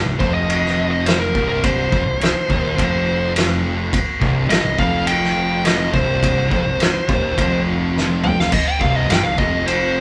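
This ominous, brooding stoner and doom metal passage, cut from a longer piece, sits on a single C minor chord in a straight 4/4 feel, with the band playing live in one room under light reverb. Three low riffing guitars fill the background: a raw, double-tracked garage guitar with overdrive, a very quiet thick fuzz guitar, and a darker thick fuzz guitar with distortion. Beneath them, a fingered electric bass adds a bright, growly, overdriven fuzz tone. An oversized, low-tuned acoustic drum kit sits up front from 0.2 s, with a punchy kick, fat snare, toms and dark crash and ride cymbals, its saturated, gritty sound rolled off at the top, and a drum fill from 7.9 to 8.5 s. Also up front, a compressed, distorted fuzz lead guitar plays a warm solo in a high register over the riff.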